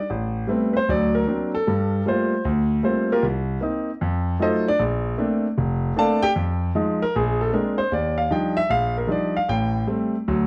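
A dark production sets a concert grand piano up front in a moderate studio reverb, its tone clear and natural with a deep bass reaching down to F1. This is a playful, swinging solo jazz piece in 4/4, cut from a longer work, with the piano alone carrying the full 10.5 seconds. The harmony moves through rich extended chords, from Am9 and Daug7 to Gm9, then a Cm7 to F7b9 turn that resolves onto Bbmaj9 at 4.8 seconds. A second pass of the opening phrase begins at 7.9 seconds on Ebmaj9, after Fm7 and Bb9 lead into it, and the fragment closes on Am7. The swung eighth notes give the playing a loose, buoyant lilt throughout.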